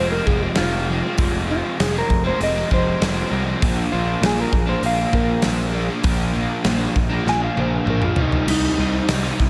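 A straight 4/4 rhythm from a big rock drum kit drives this moody, cool indie rock excerpt. The kit comes in at 0.3 s, up front in a big room, with bright cymbals, a punchy kick and a medium-tuned snare, and plays a fill from 7.3 s. Underneath, a picked electric bass with fuzz and overdrive gives a dark, round low end. A crunchy overdriven guitar, picked and double-tracked with subtle chorus, plays the riff up front. Over it, a mellow, clean, fingered electric guitar carries the melody as a solo with delay. The harmony moves from Fm to Bb and then Cm, and a huge ambient reverb gives the mix a dreamy, soaked sound.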